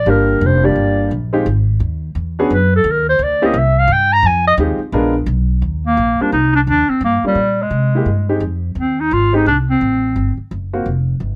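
Jazz at a brisk, swinging 172 BPM in Eb major, this sophisticated fragment of a longer piece features a warm, vibrato-laden clarinet leading the melody with a soft-attack subtone and taking a solo from 0.0 to 5.6 seconds, carried by woody pizzicato upright bass and polished grand piano chords moving through rich harmonies such as Gm7, E13 and Bb7b9, all captured up close in a dry, detailed room.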